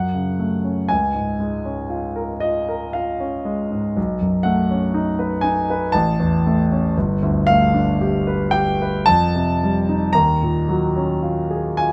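Dreamy and hazy, this brief excerpt from a longer impressionist solo piano piece drifts in a slow, rubato 3/4, with a grand piano ranging from deep bass to a clear upper register through lush extended harmonies such as Db6, Cb9, G9 and Ebm11. The piano sounds warm, polished and up front, caught by close, detailed microphones. A moderate stone-room reverb lends it a gentle halo.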